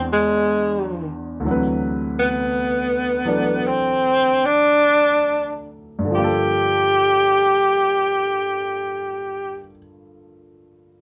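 Intimate and melancholic, this jazz ballad moves at a slow 45 to 59 BPM in 4/4 with a lilting swing on the eighth notes, and it eases into a gradual slowdown through its opening 6.1 seconds. A warm tenor saxophone carries the melody as a solo voice, sitting up front yet with a distant, roomy quality, and its jazz phrasing is colored by vibrato and scooped notes. Beneath it, a concert grand piano accompanies with a clear, natural tone, deep bass and a short sustain. The harmony moves from E7b13 to D13 before settling on Gm9, where the music opens into its final stretch. The saxophone drops out at 9.6 seconds, leaving the piano to continue alone until 11.0 seconds, all captured as a band playing live together in one room with moderate studio ambience, in a passage cut from a longer piece.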